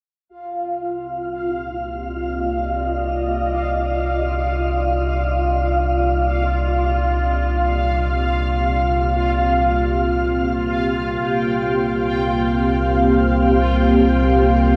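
From 0.3 s, a sweeping, resonant pad and a deep, round sine sub bass fade in together on a held C minor seventh chord, while a bubbling texture of detuned sawtooth tones with random filter steps sits up front. This hypnotic, mysterious ambient excerpt drifts in free time in C minor. The bright, chorused pad evolves through a slow filter swell over a sustained C2 bass, the texture carries its own built-in reverb, and a long shimmer reverb soaks the whole room.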